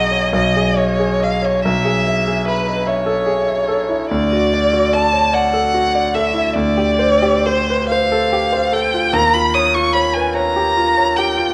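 In a rubato 6/8 with uneven beats, this luminous, pastoral fragment of an impressionist classical duo sets a single bowed violin, singing the melody with vibrato and expressive portamento, over a clear, intimate concert grand piano whose deep bass and audible action noise give the accompaniment a polished presence, both held up front in a moderate recital-hall reverb across the full 11.5 seconds.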